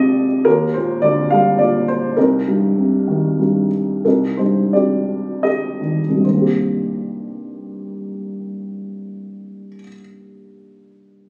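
Classical solo piano in C minor, this cool, brooding fragment from a longer piece moves in a rubato 3/4 that ranges from 67 to 107 BPM and slows between 2.2 and 6.2 seconds, as the harmony shifts from Ebmaj7 to Cm and settles on Cm7. A single dark upright piano carries the whole 11.3 seconds, sounding woody and intimate, with short sustain and audible action noise placed up front. The phone recording catches light reverb and studio ambience, and the sound is compressed.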